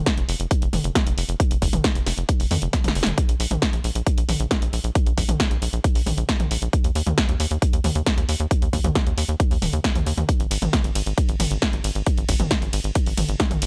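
A driving pulse at 135 BPM in straight 4/4 anchors this soaring uplifting trance excerpt, with a layered, up-front electronic kick carrying the beat alongside a tape-tinged analog drum machine with a punchy snare, whose hi-hats, ride cymbal and toms pump against the sidechain, and a brief drum fill arrives at 2.7 seconds. Beneath them, a tight sequencer bass with a sawtooth and square-wave edge plucks through a fast-attack filter between Eb1 and F2, its decaying notes also pumping to the sidechain, all set in a digital ambience.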